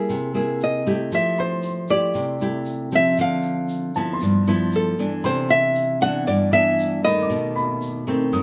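A straight 4/4 bossa nova at 117 BPM, with a grainy, bright tube shaker joining from 0.1 seconds, makes up this intimate, smooth fragment of a longer piece. From the start, an up-front, fingerpicked nylon-string guitar with a small, shadowy tone plays accompaniment through chords such as Fmaj9, Dm9, G13 and Cmaj9, and a dark, mellow baby grand piano with short sustain sits in the background. A second nylon-string guitar with a warm, classical voice and audible finger squeak carries the melody from 0.6 seconds, all captured with light reverb, close, detailed microphones and lossy compression artefacts.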